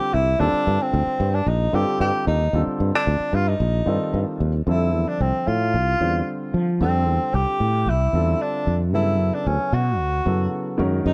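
A dark, lightly reverberant production frames this funky, slick electric jazz fusion passage at 112 BPM in F major, where a mellow tenor saxophone with gentle vibrato and a soft attack carries the jazz-style solo melody up front yet with a roomy, distant air, a warm grand piano supplies the accompaniment, and a bright, growly, punchy fretless electric bass sustains beneath them as the harmony moves from Ebmaj9 to Fmaj9 at 4.7 seconds and on to Gmaj9 at 8.9 seconds.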